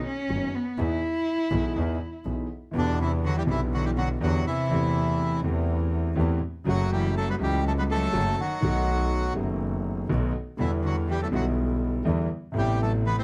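A reedy bandoneon carries the melody from 2.8 seconds, standing up front in this sultry, melancholic tango in E minor, taken at 122 BPM in 4/4 with a rubato feel. Before it enters, a bowed cello opens alone, soft in attack and played sul tasto with light vibrato, sitting intimately in the background with a slapback echo as the second line. At 0.3 seconds a concert grand piano joins with a smooth, vintage tone and deep bass, laying down the accompaniment, while a clear, bowed double bass adds a biting, nasal, earthy bottom with an airy bow and light vibrato. The harmony moves from Badd9 and Emaj7 into Em7, Am7/E, F#m and B7, returning to Em7 before closing on Amadd9. Light reverb and a dark, warm production give this fragment of a longer piece a close, shadowy atmosphere.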